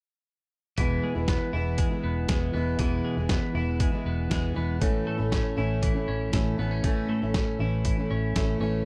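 Jangly indie pop with a bright, youthful mood, this excerpt places a full-bodied fingerpicked steel-string acoustic guitar up front beside clean, twangy twelve-string electric arpeggios touched with subtle chorus, a round, foam-muted electric bass and a gritty, tape-toned sampler-style drum kit with a thumpy kick, over a change from E to A at 4.8 seconds in a dark production with light reverb.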